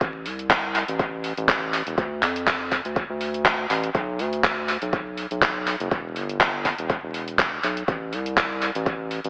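A steady 4/4 pulse at 122 BPM, with a 55% swing on the sixteenths, drives this hypnotic, moody deep house excerpt cut from a longer piece. An electronic kick drum, deep, layered and overdriven with the character of a small room, anchors the groove until it drops out at 9.0 s. Up front sits a deep house drum kit of handclaps and hi-hat, its overdriven, produced sound thrown into dub echo. Beneath them, a round analog bass moves between E1 and F2, blending square and sine tones with wave-folding into a mellow, evolving, sustained voice with a fast attack, pumping against the sidechain. The whole mix is soaked in echo and an echo-chamber reverb, with vinyl crackle and an AM-radio filter lending a hazy, lo-fi cast that lasts to 9.3 s.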